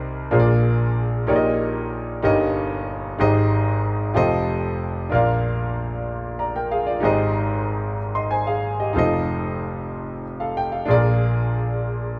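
Hopeful and soulful, this short gospel passage is cut from a longer piece and unfolds in a rolling 6/8 with a straight feel. A lone concert grand piano carries everything, spanning from a deep low register up into its upper reaches. Its tone is clear yet a little worn, with a natural character and short sustain, and it sits up front in the sound. The harmony moves through rich seventh chords, opening on Bb7 and passing through Abmaj7 and F9 before settling on Bb at 5.1 seconds, then circling back through Abmaj7 and F7 to land on Bb7 near 10.9 seconds. A moderate studio reverb gives the instrument a sense of a real room, as though captured live.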